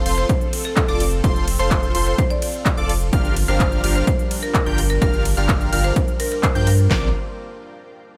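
This uplifting, triumphant festival progressive house drop at 127 BPM in Bb major opens at 0.0 seconds with several layers at once. A huge, detuned supersaw plays a riff, a plucky, catchy lead spins bright arpeggios high above, a lush pad holds sustained chords in the background, and a saturated sub bass anchors the low end. All four pump against the sidechain. The supersaw, lead and marimba carry dub echo, while the pad shimmers with chorus and phaser. Two layered big-room drum kits drive the straight 4/4 groove: one up front with punchy kick, snare and handclaps, the other adding crisp hi-hat, ride cymbal and more handclaps, both overdriven. A woody marimba struck with hard mallets plays a mid-register melody. The harmony moves from F to Gm7, and at 6.9 seconds the music resolves onto Bbadd9 as a brief new section begins, all set in a digital ambience.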